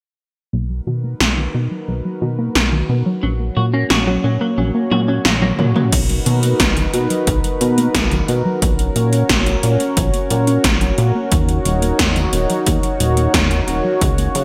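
A smooth, sawtooth-rich analog pad with sidechain pumping opens this nostalgic, uplifting 89 BPM synthwave excerpt alongside a warbling, lo-fi pluck arpeggio in the background and a glossy, dark, filter-swept synth bass, soon joined by 80s electronic drums with gated-reverb snare and toms, metallic hats and overdrive, while a twangy, clean electric guitar riff with chorus and delay appears at 3.2 s and a punchy overdriven kick enters at 5.9 s, all moving through Bmaj7, F#/A# and D#m7 under a plate reverb and bright 1980s-style digital production.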